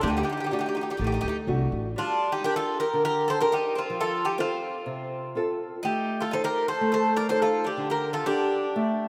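Driving and tense, this Greek folk excerpt from a bouzouki band moves at 124 BPM in G minor, with an up-front, metallic bouzouki playing the picked melody on double strings while a second, brighter bouzouki carries a lower line beneath it. A small, fingerpicked nylon-string guitar accompanies throughout, and a woody, thumpy pizzicato upright bass sounds only until 1.9 s, as the harmony moves from D to G minor, F and A diminished before returning to D. A lush hall reverb surrounds the rough home-demo mix.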